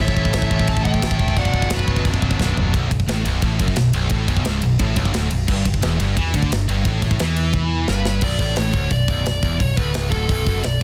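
A dense, heavily limited master with small room ambience frames this heavy, brooding metal clip, where a tight, up-front drum kit with bright cymbals and a soft-clipped snare drives beside a growly, punchy picked bass, three high-gain distorted rhythm guitars (one double-tracked) churn a riff in the background, and a dark lead guitar with tape echo carries the melody over a quieter second lead line for the first 2 seconds before returning at 7.9 seconds.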